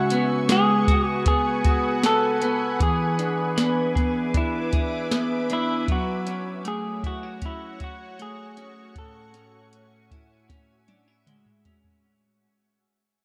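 A soft vintage rhythm box sets a straight 4/4 pulse at 78 BPM, its deep kick, tonal snare, metallic hats and toms sitting up front from 0.1 seconds, with a drum fill arriving at 10.5 seconds. This ethereal, blissful dream pop fragment in A major, cut from a longer piece, moves through C#7sus4, E7, F#m and Amaj7 while the whole passage fades out. A clean electric guitar, bright and twangy, picks arpeggios from A2 to G#4 through analog chorus and analog delay, ringing on until 12.6 seconds. Above it a dark, hollow-bodied semi-hollow electric guitar plays a fingered melody between E4 and A4, trailed by analog delay and closing at 11.2 seconds. More quietly, a shimmering ambient pad holds sustained chords from F#4 to D6 with a slow attack, detuned warbling, an octave-up sheen and granular texture, all bathed in chorus and its own reverb, while a wet spring reverb gives the echo-heavy mix its floating depth.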